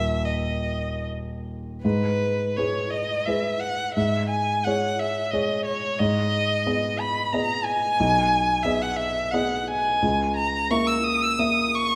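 A warm, expressive single violin carries the melody, singing with vibrato and portamento over a dark, mellow baby grand piano whose intimate accompaniment keeps a natural, short sustain and audible action noise. This solemn, elegiac romantic duo moves in a flexible, rubato 3/4, shifting into a new section at 1.8 s. Both instruments sit up front within a moderate scoring-stage reverb in a fragment cut from a longer piece.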